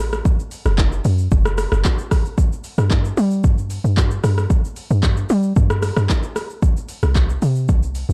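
Amapiano at 113 BPM with a hypnotic feel, this short excerpt pairs an up-front log drum bass, round, percussive and FM-toned with a noise layer, a fast attack and a decaying tail, with an overdriven deep house kit of handclaps, shaker, rim click, metallic hi-hats and a deep kick, roughened by vintage 12-bit sampler grit and the air of a large room, set within a dry, dark mix.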